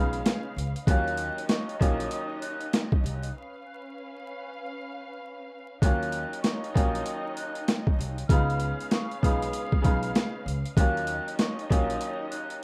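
A breathy, slightly unsteady silver flute melody with tape echo opens this gritty, reflective boom-bap hip-hop cut in Eb minor at 97 BPM, over a bright, short-sustain upright piano with a cassette tint, lush bowed strings with portamento, and a woody, growly pizzicato upright bass, as an overdriven, pitched-down sampler-style drum kit with a thumpy kick and high-tuned snare sits up front from 0.1 seconds, swung on the 16ths and passing through a break between 3.3 and 5.8 seconds, all wrapped in light reverb and vinyl crackle for a rough home-demo feel.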